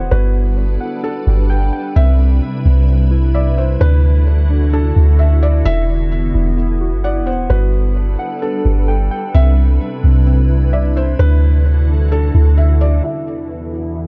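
A half-time 4/4 hip hop groove at 130 BPM in E minor carries an ethereal, hazy mood, with a round, up-front 808-style bass anchoring a glassy, warbling FM pad, a muted felt-piano melody with audible action noise and digital delay, and intimate felt-like synth arpeggios, all moving through Gmaj7, Cmaj7, Dadd9 and Esus2 in a dark production until the bass stops at 13.0 s and a filter sweep carries the piece to an E5 chord.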